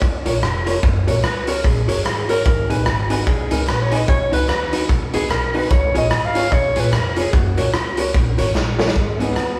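A breathy alto saxophone with vibrato and scooped notes leads this mischievous, energetic ska at 148 BPM in G# dorian, soloing from 1.2 to 7.7 seconds over a swung groove from a gritty, saturated garage drum kit with a punchy kick and a woody, thumpy pizzicato upright bass. A dark, clean hollow-body jazz guitar comps with dub echo, while a barely audible group handclap adds crisp accents. After a drum fill at 8.6 seconds, a clear vintage trombone enters at 9.0 seconds, all heard as a band playing live in one room with large studio reverb and vinyl crackle, cut from a longer piece.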